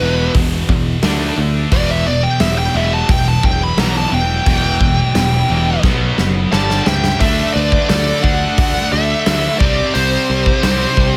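Hard rock at 88 BPM in E minor, driving and aggressive, built on three bright, distorted rhythm guitars picking a riff over growly picked bass and a huge arena drum kit with a punchy kick, which enters at 0.3 seconds and plays a fill from 5.8 to 7.2 seconds. Up front, a dark, bluesy overdriven lead guitar solos through the opening, while a hollow, flute-like pad sustains chords very quietly underneath. From 6.5 seconds a smooth second lead guitar joins in the background, all under light reverb in this brief cut from a longer piece.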